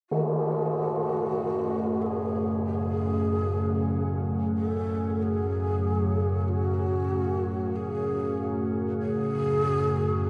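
In a slow, straight 4/4 at 47 BPM, this desolate, cavernous dark ambient drone excerpt in F# minor opens at 0.1 seconds with a breathy, hollow shakuhachi melody carrying vibrato and tape echo, joined at 1.1 seconds by a deep, moody pad of detuned sawtooth chords with chorus, and at 1.3 seconds by an up-front, organ-like low drone shimmering with ensemble chorus and phaser, all of it hanging in a vast, echoing space whose huge reverb tail stretches to 7.8 seconds.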